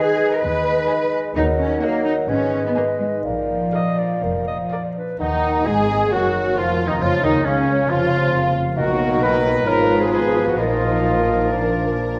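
Restless and urgent, this fast, dramatic romantic orchestral passage, cut from a longer piece, gives the lush, vibrato-rich violin section the melody in a pliant rubato, while a second violin line, clarinet and a hollow, airy flute weave around it. A very quiet viola section, a distant bassoon and ringing, thumb-plucked harp arpeggios fill the middle, and bowed cellos and double basses anchor the bass. At 5.2 s, a roomy oboe, a dark French horn section holding chords and clear trumpet stabs join in, all set in a generous scoring-stage reverb.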